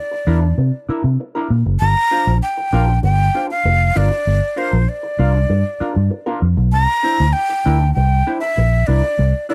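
A dry, close 1970s-style studio sound in a small room frames this hypnotic, cool funk excerpt at 98 BPM in G dorian, where a breathy, vibrato-laden flute carries the melody up front over a dark, clean hollow-body guitar with wah-treated accompaniment and a round, foam-muted fingered electric bass, all moving through C9 and Gm7 harmony.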